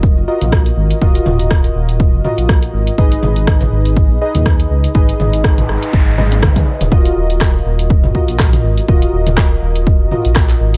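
A punchy, overdriven electronic kick sits up front in this afro house excerpt at 122 BPM in Eb minor, with a spiritual, warm mood and a lightly swung 16th feel. Beneath it, a dark, rumbling detuned saw bass with tube saturation and sidechain pumping pairs with round, mellow analog key stabs treated with chorus, a filter sweep and digital delay, moving from Ebmadd9 to Abm and back. A tape-tinged deep house kit adds handclaps, hi-hat, rim click and toms, while a grainy, bright egg shaker plays in the background until 6.9 seconds; a noise sweep enters at 5.4 seconds and a drum fill arrives at 6.2 seconds, all in a dry mix.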